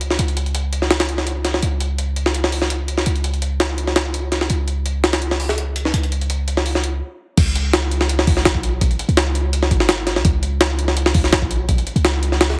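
This atmospheric, frenetic drum and bass and jungle excerpt at 167 BPM opens with a gritty, pitched-up jungle sampler-style kit, up front and compressed, with a thumpy kick, high-tuned snare, hi-hat and crash cymbal, each high-pass filtered, tape-warm and re-recorded in a large room. Beneath it sits a deep, boomy 808-style sine bass with a noise layer, fast attack and mellow decay. After a brief stop at 7.0 seconds, the drop hits at 7.4 seconds and runs to the cut at 12.6 seconds, all within a heavily compressed, radio-like sound with light reverb.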